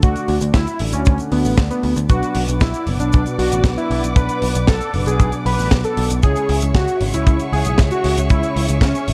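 Italo disco with a nostalgic, danceable mood, heard in a short cut from a longer piece in straight 4/4. A dry, tight acoustic kick sits up front beside a picked electric bass that is round, foam-muted and dark, colored by tube saturation, while a tight funk kit adds cabasa, hi-hat and a high-tuned snare. A thick, bold unison lead carries the melody with detuned sawtooth and triangle tones, vibrato and delay, and mellow synth brass stabs with a filter sweep and chorus sit in the background. At 2.1 seconds a chamber string section enters with bowed, expressive sustained chords, soft in attack and smooth on top. The harmony moves from D to Bm and then to C#m at 6.2 seconds, and the production is warm and dusky, with light reverb and small room ambience.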